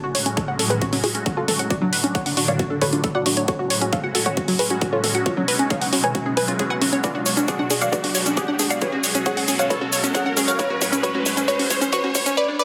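Euphoric and soaring, this uplifting trance build-up, cut from a longer piece, runs at 135 BPM in F# harmonic minor, with a detuned unison pluck melody and chorused, tape-echoed analog pluck arpeggios bouncing to sidechain pumping over a bright, evolving supersaw swell of sustained chords colored by phaser, moving through F#madd9, D, C#7sus4 and G#m7b5. An overdriven, up-front big-room kit of hi-hat, shaker and toms plays alongside a punchy, layered electronic kick. A filter sweep runs across the synth pluck throughout, a background riser enters at 3.7 seconds, and a drum fill starts at 7.0 seconds. Lush hall reverb surrounds a dense, heavily limited modern master.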